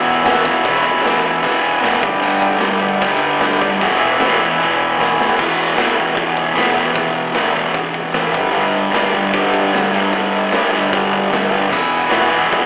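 Heard as a live gig through the venue's PA with a telephone-like tone and small-room club reverb, this raw, rowdy garage rock piece at 152 BPM is driven by a dark, double-tracked fuzz guitar riff with slapback echo up front, backed by a gritty, saturated drum kit with a boomy kick that plays a fill at 5.0 seconds, while a buzzy vintage combo organ holds sustained chords in the background until 5.4 seconds and returns at 11.7 seconds.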